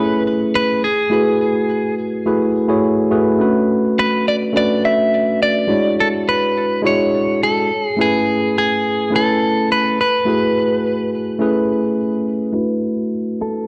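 A straight 4/4 chillout groove carries this smooth, wistful fragment of a longer piece, where a picked, compressed clean electric guitar sings the melody through digital delay over a worn, slightly out-of-tune tine electric piano played through a combo amp with tape echo, both up front in a dark, warm mix bathed in wet stage reverb, as lush extended chords drift by until a filter sweep arrives at 12.5 seconds on a closing suspended chord.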